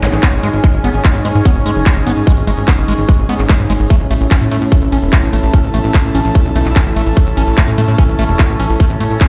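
Cut from a longer piece, this intense, alien psychedelic trance passage opens with a dark, detuned wavetable pad under phaser and reverb, a squelchy, resonant acid bass riff with phaser and delay in the background, a punchy, funky sawtooth bass pluck up front, a techno kit of handclaps, smooth hi-hats and ride cymbal, and a breathy chorused pad, with both pads and the acid line pumping to the sidechain, before a tight electronic kick lands up front at 0.2 s, all played on a big sound system in a bare stone room.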